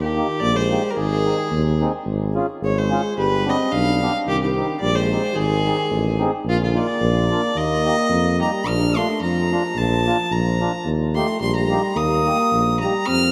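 Alpine folk in the manner of a small dance band, this festive, jolly passage is cut from a longer piece and moves in a lilting two-beat metre with a light swing. A single bowed fiddle carries the melody up front with a nasal, gut-string tone, while a euphonium plays a classical-style second line in a warm, solo voice. Underneath, a tuba holds the bass with a mellow sound, soft attack, smooth top and light vibrato, sitting prominently in the mix. A single-reed accordion fills in the accompaniment from the background with a round tone, entering at 0.2 seconds and dropping out at 12.9 seconds. Around 8.7 seconds the tune moves into a second section with a shift of harmonic centre, and the whole band sounds as if it were playing in a vast, echoing cathedral.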